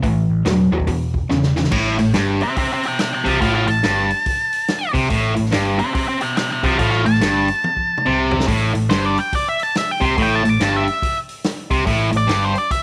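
Smoky and gritty, this excerpt of swung blues rock with a southern rock edge drives along at 142 BPM in A minor, built on a bright, double-tracked overdriven guitar riff sitting up front over a growly, punchy overdriven bass and a vintage drum kit with dark cymbals, a punchy kick and a rolled-off top. After a short opening that moves from A5 to E5, a drum fill at 1.3 seconds leads into an A minor passage where a dark octave-fuzz lead guitar, distorted and up front, takes a solo from 2.4 seconds. A second drum fill arrives around 7.6 seconds, and the whole trio sits in light reverb with a small room ambience.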